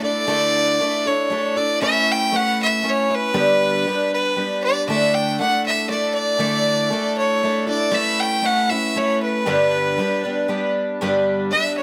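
A moderate echo-chamber reverb surrounds this short, hopeful and nostalgic rock excerpt in three, with both instruments placed up front. A single bowed fiddle carries the melody with a clear, earthy tone and light vibrato, while a picked twelve-string acoustic guitar accompanies throughout with a bright, shimmering, octave-doubled sound, an auditorium-like ambience and an audible finger squeak. The harmony moves through Dsus2, Aadd9 and G, then repeats that cycle.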